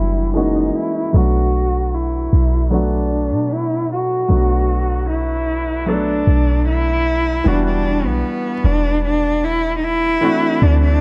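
This contemporary R&B piece in E minor moves at a slow 76 BPM in a straight 4/4, with a sensual, moody character, heard here as a short cut from a longer work. A single bowed cello carries the melody up front, its dark tone shaped by vibrato, soft attacks and expressive portamento with a smooth top end. Beneath it, a concert grand piano supplies intimate accompaniment with a natural sound, deep bass and audible action noise. A clean 808-style bass sits up front, its deep, boomy sine tone striking with a fast attack and then decaying. The whole mix sits in a studio reverb behind a low-pass filter that sweeps through the opening passage, and the harmony moves from F#7 and Bm7 into a new section at 7.5 seconds on Em9 before reaching D7 at 10.2 seconds.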